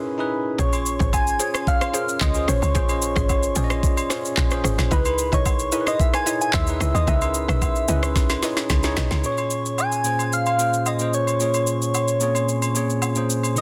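Amapiano at 111 BPM in a straight 4/4, this short excerpt carries a late-night, soulful mood over minor-ninth chords moving between Dbm9 and Bbm9. It opens with a brief break where a gentle, round synth lead carries the melody with chorus and digital delay, joined by a bell-like, bright tine electric piano playing clean, up-front accompaniment. At 0.6 seconds the groove drops in: a punchy, woody log drum bass with a fast attack and decay, and a smooth R&B drum kit of knocking kick, handclaps, rim click, shaker and a tape-warm snare with soft clipping. Agogo bells and woodblock add close, dry acoustic percussion, while a mallet-like synth pluck sits in the background with short, round stabs treated with chorus and delay. After a drum fill, the log drum and pluck drop out at about 9.2 seconds, leaving lead, electric piano, drums and percussion for the final section. The sound is dry and dense, with a heavily limited modern master.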